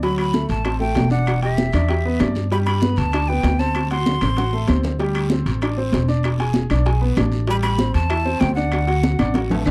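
A breathy, bright jazz flute carries the melody over clear baby grand piano, a growly, up-front upright bass, and a bed of bongos, congas, guiro, and ringing metal-shelled timbales, with woody claves joining at 0.2 seconds in this festive, sunny salsa fragment. The flute's vibrato and chiffy attack step away at 4.8 seconds and return at 7.5, while the piano's intimate, natural tone, complete with audible action noise, fills out chords that move from D7 through Em7, G, E7 and Am7. Drum fills mark the phrase ends, and the dry, close recording has a 1970s studio character, with the high-tuned congas, round low bongos and woody claves sitting behind the band.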